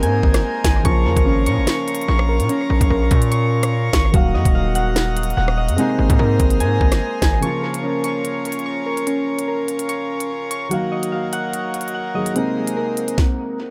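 A dark, cold drill beat opens with everything sounding at once: an electronic drum kit of knocking kick, sharp snare, crisp hi-hats and rim clicks sits up front in a half-time feel, its hits trailing dub echoes. Soft, round synth keys in the manner of an electric piano spin arpeggios through chorus and dub echo, their gentle, full-bodied tone shaded by a filter sweep. Beneath them, a mellow, vintage-toned grand piano with deep lows plays echoing accompaniment, while a reedy, breathing pedal harmonium holds quiet sustained chords over a cycle that moves from Bbm to Ebmadd9 and Abadd9. A heavy, saturated 808-style bass with a gritty noise layer drives the first section aggressively, then drops out at 7.4 s, handing the second section to the drums, synth keys, piano and harmonium. The echo-heavy mix carries light reverb, and the clip is cut from a longer piece.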